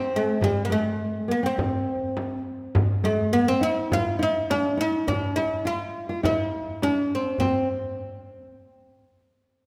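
Passionate and warm, this Arabic maqam ensemble piece in C maqam huzam moves at 103 BPM in a straight 4/4. A woody, plectrum-plucked fretless oud sits up front carrying the melody, while a dark, fingerpicked nylon-string guitar adds a second line with audible finger squeak. A crisp metal-shell darbuka and a small, bright frame drum sit in the background, all set in a wet concert hall reverb, with a new section arriving at 7.4 s shortly before the instruments stop at 7.7 s.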